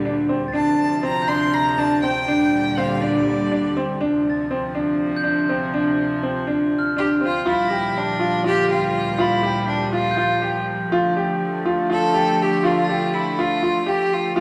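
Contemporary chamber music in a restless, urgent 7/8, this excerpt sets a rich, reedy chamber string section's sustained chords, played with a period-style gut-string tone, under up-front arpeggios from a smooth, vintage grand piano, while a solo violin with a nasal, earthy voice carries the melody, falling silent between 3.8 and 7.0 seconds, and a bell-like glockenspiel struck with soft plastic mallets rings in the background, all within the lingering reverb of a recital hall.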